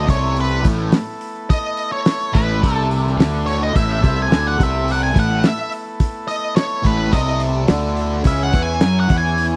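An octave-fuzz lead guitar carries the melody in a solo across this brief cut from a longer psychedelic rock piece, its dark, distorted picked tone sitting up front and trailed by a slapback echo. Beneath it, a double-tracked fuzz guitar plays a bright, picked riff through a phaser, while a fuzz picked electric bass adds a warm, overdriven low end that also sits close and forward. A cloth-damped drum kit thuds along in a straight 4/4 with muffled, rolled-off hi-hat, a tight kick and a fat snare, sounding gritty and lo-fi as if in a small room. A buzzy vintage combo organ holds clean sustained chords in the background, resting on Asus2 before moving to C#m at 8.3 seconds. The dry, close recording has a 1970s studio character, and the mood is hazy and kaleidoscopic.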